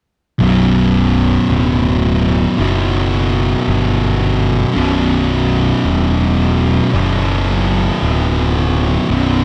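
Sludgy and brooding, this slow, swung metal excerpt pairs a thick, double-tracked fuzz guitar riff on distortion with a growly, bright overdriven picked bass, both up front over one minor chord in a dark production with light reverb.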